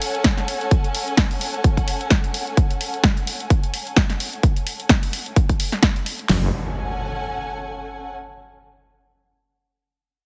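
The sound is dry and heavily compressed, with a dense, radio-ready squeeze over a gritty, bouncy bass house groove with a light swing, cut from a longer piece. Two electronic drum kits sit up front. A big-room kit enters at 0.2 seconds with a punchy kick, a huge snare and metallic hats, all overdriven. It is layered with a house kit carrying a punchy snare and warm, tape-warm hats in a small room ambience. Beneath them a lush, bowed string section holds a minor chord with vibrato and a smooth top, pumping against the sidechain and fading through the opening stretch. At 6.3 seconds the drums drop away as a heavy, saturated wobble bass blurts a short, detuned sawtooth note with chorus, while an electronic impact rings out to the end with the strings.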